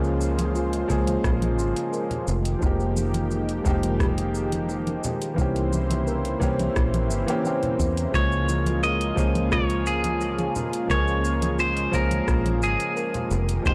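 Sunset chillout at 87 BPM in a straight 4/4, this excerpt carries a warm, wistful mood over a gently turning progression of Db6, Fm11, C7b9 and back to Db6. A concert grand piano with audible action noise and deep bass plays intimate accompaniment through tape echo and shimmer reverb, while a lush, thick unison pad of detuned sawtooth tones with a slow attack sustains warbling vintage chords through chorus. A dark, woody kalimba plucks ringing arpeggios in the background, and a punchy, foam-muted fingered electric bass sits up front beneath them. The groove comes from a deep analog electronic kick and an overdriven, produced R&B kit of hats, rim click and shaker re-recorded in a small room, with medium-tuned acoustic congas ringing from 0.4 seconds and a very quiet electronic downlifter sounding through the opening 2.6 seconds. At 8.2 seconds a bright, twangy, compressed clean electric guitar enters up front with a picked melody, soaked in tape echo and shimmer reverb, all captured in a gritty cassette-tape sound with light reverb.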